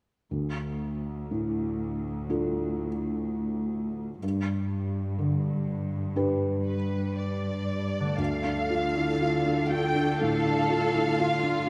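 Rubato at 61 BPM in 4/4, this bittersweet, moving cinematic film score in D dorian, cut from a longer piece, opens with a mellow, felt-muted upright piano over a smooth, up-front chamber cello section moving from Dm to G, before a lush, vibrato-rich symphonic violin section takes the melody at 6.7 s, a very quiet, ringing concert harp adds arpeggios at 8.0 s, a focused viola section follows at 8.2 s, and a second violin line with a soft attack joins at 10.2 s, within a moderate scoring-stage reverb.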